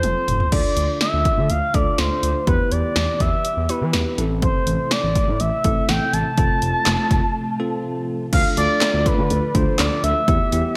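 A drum fill on a punchy analog drum machine opens this driving, cool synth-pop excerpt at 123 BPM in D dorian, as an expressive synth lead, a bell-like tine electric piano and a smooth gliding synth bass sound from the start. At 0.5 seconds a mellow string machine with cellos enters in the background, holding sustained chords with a slow attack, long release and ensemble chorus over a progression that moves from D minor through E minor, A minor and F. Up front, the dark, sawtooth-and-triangle lead carries the melody with a soft attack and vibrato, dressed in chorus and delay, while the clean electric piano accompanies in a bright middle register. The saturated, wave-folded bass slides with portamento beneath a tape-warm kit of kick, snare, handclaps, hi-hat, toms and crash, its gated reverb adding snap. After a break at 7.4 seconds, a new section begins on D minor at 8.3 seconds within a lush hall reverb and bright 1980s-style digital production.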